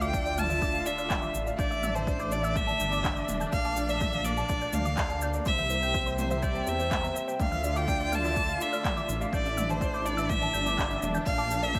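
A punchy electronic kick enters at 0.1 s over a deep house kit of handclaps, shaker and toms, with a sub drop impact sounding in the background for the first 1.6 seconds of this melancholic, hypnotic piano-and-strings electronica. A dark, detuned sawtooth bass and a distant chamber string section pump against the beat, while a mellow, boxy grand piano riff and a warbling, lo-fi pluck playing arpeggios both trail delay. Up front, a rich, expressive solo violin carries the melody with vibrato and portamento over a light reverb, as the music cycles through a moody progression from Dmadd9 to Bbmaj7.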